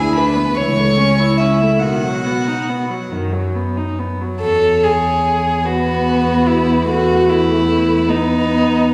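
A recital hall's reverb surrounds this short extract, which is heard from further back in the room and gives the quartet a soft, distant glow. It is a tender, slow romantic movement for string quartet in a lilting 6/8, played with free rubato and cut from a longer classical piece. The first violin carries the melody high above, with a pure, floating tone and a smooth top. The second violin sits up front on its supporting line, close and intimate, with light vibrato and an airy bow. The viola fills in the accompaniment with a rich sul tasto sound, and the cello, also up front, anchors the bass with a warm, bowed tone. All four players bow sul tasto with soft attacks, and the music moves into a new section at 4.4 seconds.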